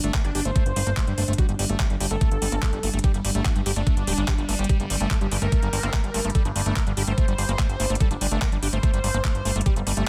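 Psychedelic trance at 145 BPM in G minor, this intense, alien excerpt drives a knocking, up-front electronic kick and a garage kit of handclaps and metallic hats under a fat, nasal analog bass, a squelchy, gritty acid riff with distortion and tape echo, a bold detuned unison lead with vibrato, phaser and tape echo, and an evolving, morphing wavetable pad in the background, all three pumping to the sidechain, while a metallic wobble bass flickers in very quietly at 0.2 and 5.8 seconds, in a dense, heavily limited, dry mix.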